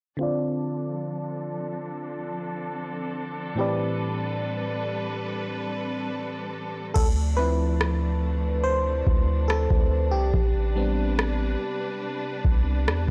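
Contemporary R&B at a slow 71 BPM in D dorian, sensual and late-night, where a glassy, bell-like FM electric piano with chorus and a lush bowed string section move between Dm7 and Am11 under a filter sweep, until at 7.0 seconds a deep, sine-toned 808-style bass and a booming drum machine with kick, rim click and crash arrive as the electric piano takes a solo, all in a dry, gritty cassette-tape sound.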